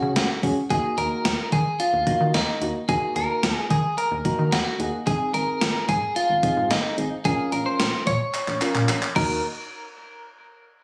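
A cool, melancholic synth-pop excerpt in Eb dorian at 110 BPM opens with a clean, up-front electric guitar melody trailed by tape echo, over soft, mellow electric-piano-like synth keys shimmering with chorus and a rubbery, hollow square-wave bass with a dark, bouncy filter pluck. At 0.2 s a gated 80s digital drum machine joins with a thumpy kick, an overdriven gated-reverb snare, handclaps, hi-hat and crash, sitting up front with a small-room character. The chords move from Ebm through Abadd9 and Bbm, a drum fill arrives at 8.3 s, and a moderate plate reverb with digital ambience and compression gives the whole a slightly phone-captured sheen.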